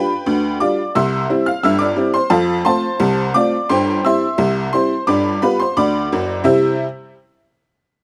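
Playful and jaunty, this short ragtime piano excerpt, cut from a longer piece, moves at 87 BPM in a straight 2/4 in C major, tuned slightly sharp to A4 = 442 Hz. A lone tack piano carries everything from 0.0 to 6.8 seconds, ranging from F#1 up to F6 with a metallic, jangly bite and a boxy, vintage character. Its percussive attack sits up front in a dry, open-air sound with little reverb and an absence of room tone. The harmony opens on G7, settles to C, moves through F and C/G, and returns to G7 before landing on C at 6.5 seconds as a new section begins. The clip ends just after that arrival, leaving a brief taste of the next strain.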